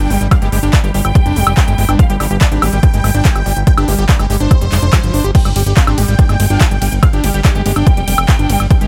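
A squelchy, screaming acid line with distortion, chorus, sidechain pumping and digital delay drives this intense, psychedelic trance excerpt, its riff running between F3 and G4 at 143 BPM in a straight 4/4 feel, tuned to A4 = 444 Hz. Above it, a huge, compressed supersaw carries the melody from G4 to G5 through phaser, pumping and delay, while a fat analog bass holds the low end between F1 and Ab1, sitting up front with a thick, detuned sawtooth tone and filter sweeps. A punchy electronic kick enters at 0.3 s and dominates the mix, joined by a big-room dance kit of crisp hats, ride and crash cymbals, handclaps and woodblock. Very quietly underneath, a swarming, granular drone sustains chords on G3, and a metallic, wobbling FM bass slips in briefly at 0.3 s before returning from 5.8 to 7.8 s between C4 and G4. The sound is dry and loud, over a G5 chord throughout this cut from a longer track.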